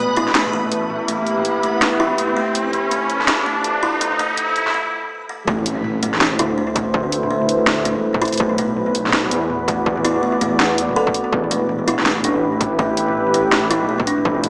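Soaked in plate reverb with a high-passed, small-speaker sheen, this heavy, tense half-time drum and bass excerpt opens on a build-up where an up-front riser and a reversed, granular swelling texture hover over a moody, chorused ambient pad, a rumbling detuned saw bass, an overdriven kit with cracking snare and bright hats, and a woody kalimba arpeggio under a filter sweep, then after a brief break the drop lands at 5.5 s with an impact and a distorted electronic kick.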